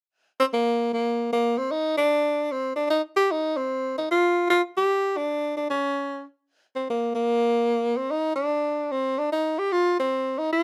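A clear tenor saxophone enters alone at 0.4 seconds, playing a relaxed, playful jazz line with a swung feel that runs to 10.6 seconds of this excerpt. Its tone is up front and detailed, shaded with vibrato and scooped notes, while a light reverb gives the close-miked sound a touch of space.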